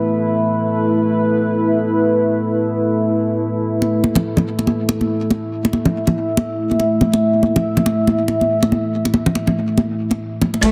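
Cavernous and heavy, this half-time deep dubstep fragment at 141 BPM opens on a moody, detuned sawtooth pad holding an A5 chord through chorus and its own reverb, joined at 3.8 s by bright, damped, high-tuned congas trailing dub echo, before a bowed cello with vibrato, a rumbling detuned saw bass and a muffled, pitched-down hi-hat all enter at 10.6 s just as the cut ends.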